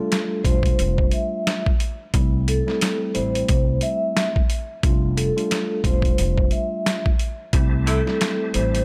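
Soft-mallet vibraphone rings out a mellow, close-miked melody over a cassette-tinged tine electric piano to open this confident, swung boom-bap hip-hop excerpt in C major at 89 BPM, as a gritty, pitched-down sampler drum kit with a thumpy kick sits up front and a woody, dark pizzicato upright bass settles beneath, before a reedy tonewheel organ with fast rotary and key click arrives at 7.5 seconds and a bright saxophone section lands a brief stab at 7.9 seconds, all in a studio reverb.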